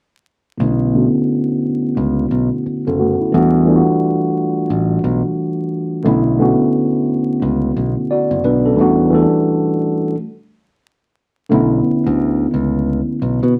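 A worn, slightly out-of-tune tine electric piano sits up front through a combo amp, its low-passed Bm11 and Em11 chords shaped by a filter sweep, with a stop from 10.1 to 11.5 seconds before the music returns to Bm11. A bright, punchy fingered electric bass plays beneath it in a late-night, smooth neo-soul R&B groove at 88 BPM in B minor, with swung 16ths. This excerpt carries vinyl crackle and a wet small-room reverb.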